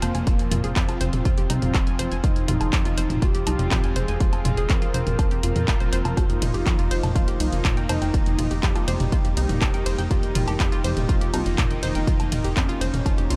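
Melodic techno at 122 BPM in 4/4, driving and cinematic, built on a heavy layered electronic kick that enters at 0.3 s beneath a punchy analog drum machine of handclaps, hi-hat, ride cymbal, toms and woodblock with a small-room character, while a plucky, funky sawtooth bass pumps against the kick. A fat, detuned analog lead with sub octave and vibrato carries the melody through cassette-tape colour and delay, over round chorused pluck arpeggios and brassy, warbling vintage pad stabs that swim in diffuse ambient delay. The harmony moves from Fmadd9 to Ebadd9/F at 6.2 s, a very quiet downlifter sounds in the opening 2.2 s, and light digital ambience frames this cut from a longer piece.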